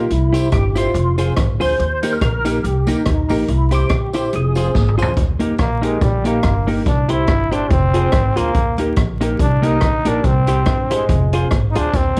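A joyful, cheerful ska groove with a light swing, cut from a longer piece and wrapped in vinyl crackle, light reverb and small room ambience. A percussive tonewheel organ carries the opening melody until 5.0 seconds, its fat tone marked by key click, chorus vibrato, a slow rotary speaker and slapback echo. Underneath, a clean, compressed electric guitar plays picked accompaniment, a woody upright piano adds stabs in the background with slapback echo, and a dark, pizzicato upright bass with tube saturation anchors the low end. A roomy big-band drum kit with a boomy kick and rolled-off top swings through hi-hat, snare, rim clicks and toms, while a jingly tambourine sits faintly in the background until 5.1 seconds. After a drum fill, a raspy, growling trombone takes an up-front solo from 5.6 seconds, gritty and punchy with vibrato, riding the chord cycle of C, F minor and E-flat to the end.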